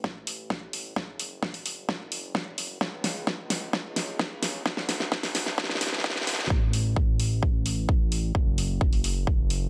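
Festival progressive house in A major at 130 BPM, this triumphant, anthemic clip from a longer piece opens with a build-up and drum fill that run until 6.5 seconds before giving way to a new section, driven by a punchy, up-front electronic kick and a big-room kit of hi-hats and a huge layered snare, all underpinned by a fat, detuned, saturated sawtooth bass that pumps under sidechain compression through a high-pass filter, with light reverb on the whole mix.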